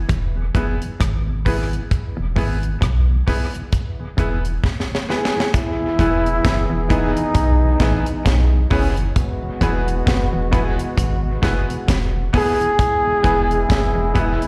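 A round sub bass opens this laid-back, uplifting roots reggae excerpt in E major at 66 BPM, joined at once by a dry, up-front drum kit with a high-tuned snare, tight kick and dub echo, a very quiet hollow-body guitar riff, a softly overdriven tonewheel organ on slow rotary, bright, woody upright piano stabs with slapback echo, and a clean, dark electric guitar bathed in lush chorus in the background, until a drum fill around 4.6 seconds ushers in a scooped, vibrato-laden solo trombone melody at 5.1 seconds, backed by a punchy, clear trombone section from 5.5 seconds, both drenched in dub and slapback echo, all heard through a venue PA in a recital-hall reverb.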